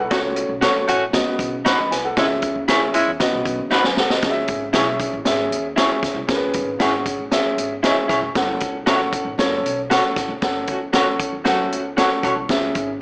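Driving and passionate, this short slice of uptempo 1960s-style soul moves with a straight, steady pulse. A boxy upright piano sits up front with audible action noise, carrying the accompaniment across the whole passage, while a woody, thumpy upright bass, played pizzicato, stays in the background. A vintage drum kit with a punchy kick, a high-tuned snare and a rolled-off top fills in from the start, throwing in a fill just before the 4.2 second mark where the music moves into its second section. An electric guitar through a small old amp adds slightly broken-up, lo-fi stabs bathed in spring reverb. A bright saxophone section with light vibrato and a smooth top comes forward at the opening and returns briefly around 10.7 seconds during a band accent, and the whole is heard through a moderate room reverb with a small-speaker character.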